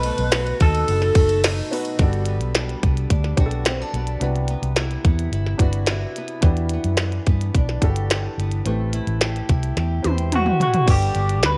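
A slightly broken-up, lo-fi electric guitar through a small old amp carries the melody up front with subtle chorus and tape echo, heard only briefly at the start and again from 10.4 seconds. Beneath it sit a glitchy, clicky drum kit with a tight kick and tiny snare and a dark, foam-muted fingered bass, both up front, the bass round and punchy. A parlour steel-string acoustic guitar bathed in lush chorus and vibrato and a woody upright piano with audible action noise and cassette-tape texture sit lower, giving this mellow, hazy bedroom-pop excerpt its drift through seventh chords toward a drum fill from 9.8 seconds.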